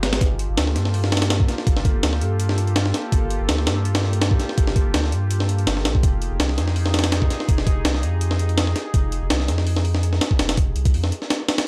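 A dry, gritty cassette-tape recording cut from a longer drum and bass piece with a jungle edge, frenetic and dark, where a compressed, pitched-up sampler breakbeat with a thumpy kick, high-tuned snare and hi-hat sits up front in a touch of studio ambience, a deep, round dub sub bass sustains beneath it until it drops out at 11.1 s for a brief break, and a warbling, nostalgic, detuned pad with chorus and its own reverb holds mellow Gm9 and Fm9 chords further back in the mix.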